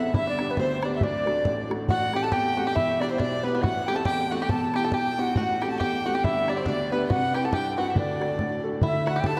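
Rollicking and cheerful, this swung Celtic polka in 2/4 is led by an airy, crisp wooden baroque flute up front, with a biting, earthy solo fiddle and a twangy banjo played with fingerpicks adding second lines, all three carrying tape echo. A clear, woody and slightly detuned upright piano accompanies through chords such as G, Am7, Em and Cmaj7, while a damped, tight bodhran sits close and dry from 0.1 seconds. The whole mix is soaked in a lush hall reverb for a dreamy glow, and the passage is cut from a longer piece.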